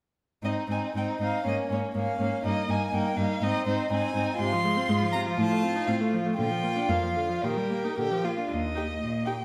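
A rich first violin carries the melody with soft-attacked, expressive vibrato and portamento over a smooth, close second violin line, an intense, clear viola accompaniment and an even, up-front cello bass in this lively, graceful classical-period string quartet passage in 2/4, played with rubato, shifting its harmony at 4.4 seconds and cut from a longer piece, all set in a wet stone room.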